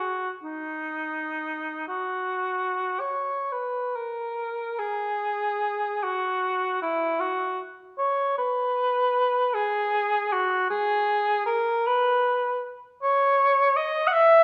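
Lyrical and nostalgic, this brief classical passage for unaccompanied cor anglais unfolds freely in 6/8 with expressive rubato, its opening phrase giving way to a longer second idea at 3.5 seconds. The mellow solo line, touched with light vibrato, sits up front yet carries a distant, roomy quality from the moderate recital hall reverb. Cut from a longer piece, it ends at 14.4 seconds.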